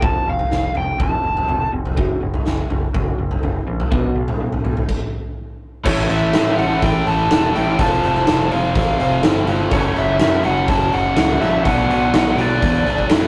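A rough rehearsal-room recording with tube saturation and a moderate booth ambience frames this anthemic, bittersweet excerpt of quiet-loud alternative rock at 124 BPM in 4/4. Over a huge, natural-sounding arena kit with a punchy, up-front kick and a growling overdriven bass, a dark overdriven lead guitar plays a brief melody while a lo-fi, phaser-tinged guitar plays arpeggios in the background until a stop at 4.9 seconds. At 5.8 seconds a raw garage guitar and a scooped, bright high-gain guitar enter with riffs, and the lead guitar carries its melody again as the chords move from A through F and F#m to Bm.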